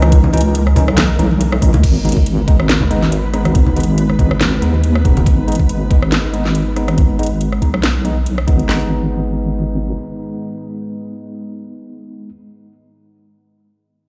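Deep dubstep at 140 BPM in G# minor with a swung, half-time feel, this cavernous, dark fragment opens on a drop over C#madd9 before settling onto G#m at 1.8 s, when a filter sweep moves across the up-front wobble bass, a detuned, chorused blend of square and sine that holds until 9.9 s. Two layered electronic garage kits supply a knocking kick, cracking snares, metallic hats, handclaps, rim clicks and crash, backed by low-tuned, thick-skinned congas until 5.2 s, while clean tine electric piano stabs pass through a low-pass filter and dub echo. A very quiet, mellow sawtooth pad with slow attack sustains moody chords, a grainy, flickering granular texture hovers in the background, and the mix rings out in a stone room reverb.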